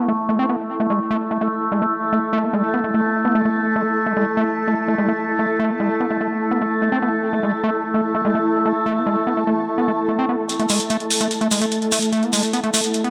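Driving and psychedelic, this psychedelic trance passage cut from a longer piece sets a nasal, chorused drone with moving overtones and a squelchy, gritty overdriven acid bass riff with tape echo beneath a cloudy, detuned granular pad, until a build-up at 10.5 s brings in a low-pass-filtered electronic hi-hat with metallic tones and a grainy acoustic shekere, all within a moderate plate reverb.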